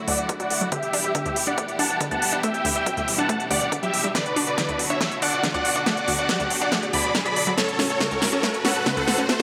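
Uplifting trance at 140 BPM in a straight 4/4, this euphoric, soaring build-up is cut from a longer piece and moves through Dadd9, Em/D, Bm/D and F#m. Up front, a huge, thick, detuned supersaw carries the melody with vibrato, compressed and sidechain-pumped, run through a low-pass filter sweep across the whole passage and tape echo. Beneath it a lush, bowed symphonic string section holds sustained chords with smooth vibrato and pumps with the sidechain. An analog pluck spins round, bright arpeggios coloured by chorus, cassette tape grit and tape echo, while a tight, nasal sequencer bass drives very quietly underneath. The big-room drum kit sits up front with a huge snare and crisp, pumping hats, joined at 0.3 seconds by a punchy electronic kick re-recorded in a small room and kept in the background, with a drum fill running from 4.1 seconds to the end. A very quiet riser enters at 0.9 seconds, and a moderate digital room reverb adds space.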